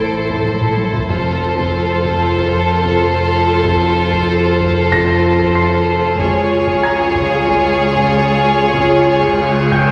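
Over a straight 4/4 pulse, this mysterious, tense suspense film-score cue, cut from a longer piece, sets a clear violin melody against an up-front second violin line, a lush, intense viola accompaniment, distant cello and very quiet double bass sections on the bass, and an ominous, rumbling drone with its own reverb, while background taiko struck with hard sticks brings a fill at 0.5 seconds, a vintage-toned grand piano adds high texture from 4.9 seconds, a faint symphonic violin texture returns high above at 6.2 seconds, and an electronic reverse cymbal arrives at the close, the mix sitting in the roomy wash of a scoring stage under vinyl crackle.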